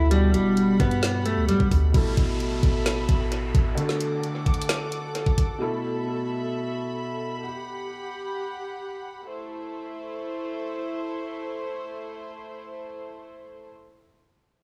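A half-time 4/4 trap pulse at 131 BPM drives this dark, menacing hip hop fragment in A dorian, where a knocking kick, woody snare and bright hats sit up front beside a deep, boomy sine 808 bass that drops out at 3.8 seconds; a clean, fingered electric guitar melody with subtle chorus and analog delay appears only briefly, a felt-muted upright piano adds soft, intimate accompaniment with audible action noise, reedy bowed strings with light vibrato hold sustained harmony through to 13.7 seconds, and an electronic downlifter enters at 1.9 seconds, the whole mix set in an echo-heavy small room.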